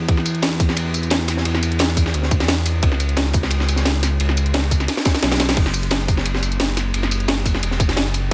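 Liquid drum and bass with a dreamy, lush mood, heard as a short section cut from a longer piece. A smooth synth bass sits up front from the start, blending sawtooth and square-wave tones with a fast attack, sustained notes and a touch of vibrato that keeps its low register mellow. From 0.1 seconds an overdriven electronic kick lands tight and forward, layered with a produced drum and bass kit whose cracking snare, bright hats, crash cymbal and tambourine carry an overdriven edge. Beneath them, a crunchy acoustic breakbeat kit adds a gritty, saturated texture, its high-tuned snare and dark ride cymbal high-pass filtered and rolled off at the top. A drum fill breaks the groove between 4.9 and 5.6 seconds, and a small room ambience surrounds the mix.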